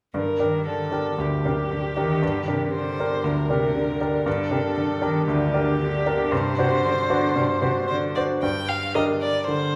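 Restless and dramatic, this quick classical-period movement for piano quartet in G minor at 116 BPM moves with rubato as a distant, vibrato-rich violin carries a smooth melody over a brilliant baby grand piano whose action noise is audible, a cello with an intense vibrato and smooth top adds a second line, and a very quiet viola slips in with soft-attack portamento near 9.0 s, all set back in a wet recital hall as Gm turns to D7/G before returning.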